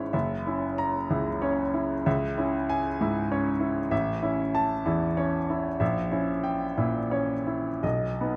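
Set in a lilting 3/4 with a freely breathing rubato, this short passage cut from a longer romantic character piece for solo piano unfolds with a lyrical, warm mood. A baby grand carries everything alone from 0.0 to 8.4 seconds, its tone clear and natural, placed up front so that the noise of the action can be heard beneath the notes. The writing spans from F#1 in the deep bass up to B5, giving the harmony a full, resonant foundation. The chords move from F#7 through C#m and A to a tense A#dim7 at 5.8 seconds, arriving on B near the close. A moderate recital hall reverb surrounds the instrument, yet the sound stays intimate, as if heard from just beside the keyboard.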